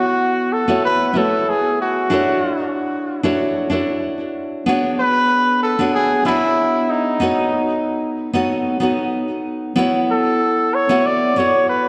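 A bucket-muted trumpet carries the melody through this short chillout passage, its veiled, mellow tone colored by vibrato yet still punchy and forceful in a jazz style, with a delay trailing its lines. Alongside it, a fingerpicked nylon-string guitar provides the accompaniment with a full-bodied, deep classical sound, softened by a low-pass filter and echoed by a digital delay. Both instruments sit up front and play together from start to finish across the 11.9 seconds cut from a longer piece. The harmony moves through A69, Dmaj9, E13 and B7 before returning to A69 at 9.8 seconds. A wet concert hall reverb lends the trumpet a roomy, distant air, and the sunny, warm mood unfolds in a straight 4/4.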